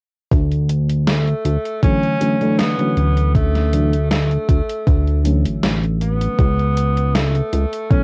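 A nostalgic, woozy vaporwave excerpt at 79 BPM opens with a glossy, chorused synth bass and a thumpy, overdriven kick sitting up front, while a gated 80s digital drum machine adds hi-hat and a snare with gated reverb, carrying the warm character of cassette tape. A clear, distant tenor saxophone with light vibrato and tape echo enters at 1.1 seconds, and a soft, round FM electric piano joins at 1.8 seconds, its lush chorus giving it a dark, full-bodied glow. The harmony rests on Dmaj7 before shifting to A/C# at 6.4 seconds, and the whole excerpt has the lightly reverberant feel of a home cassette recording with a gentle swing.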